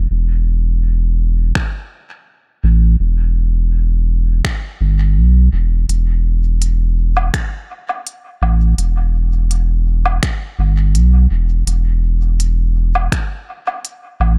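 Meditative and hazy, this ambient dub excerpt rests on a round, sine-like sub bass that sits up front from the start, moving between E1 and B1 with a fast attack and long, mellow sustain. At 1.6 seconds a deep electronic kick joins, tape-warm and close, alongside a smooth-hatted drum kit of finger snaps, hi-hat and woodblock carrying dub echo, both drum parts re-recorded in a large room. The overall mix stays fairly dry, and the kick drops out at 13.3 seconds while the bass and kit continue to the end.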